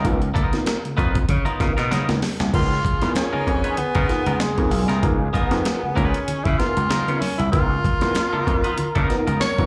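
This funk excerpt sounds like a live gig heard through the venue's PA, washed in club reverb, with a funky, playful mood and a lightly swung sixteenth-note feel. Up front sits a compressed, pitched-up sampler-style breakbeat kit with a thumpy kick, medium-tuned snare, hi-hat and crash, joined by an overdriven, punchy slap bass with a gritty edge. A clean, picked electric guitar with a twangy tone and a tine electric piano playing stabs through a combo amp, its sound thickened by ensemble chorus, both carry slapback echo, while thin-skinned congas tap along in the background. After a drum fill at 1.9 seconds, a breathy tenor saxophone takes a jazz-style solo from 2.5 seconds, intimate and whispered, with soft attacks, scooped notes and vibrato. A bright trombone with a smooth top and light vibrato enters at the same moment to play a second line behind it.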